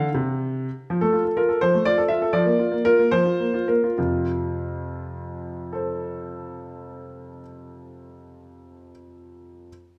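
In a rubato 6/8 at 66-84 BPM in dotted quarters that slows between 0.1 and 4.0 seconds, this playful, cheerful classical-period sonatina fragment in F major features a solo baby grand piano, clear and intimate with audible action noise, placed up front with close, detailed miking in a moderate recital-hall reverb, spanning F2 to F5 as the harmony moves from F to Bb over F and back to F at 4.0 seconds.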